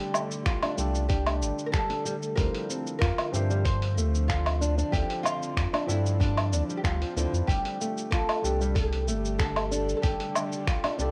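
Mystical and earthy, this organic downtempo excerpt at 94 BPM sets a woody, plectrum-plucked oud melody with cassette tape and tape echo over fingerpicked nylon-string guitar arpeggios, a soft felt-muted upright piano with audible action noise and sidechain pumping in the background, a very quiet tense string-like drone, a round sine sub bass up front from 0.5 seconds, and gritty, tape-warm sampler-style drums of cabasa, finger snaps, hi-hat, woodblock and a thumpy electronic kick, all moving through Gsus2 and Dm7 in a lightly reverberant home cassette recording.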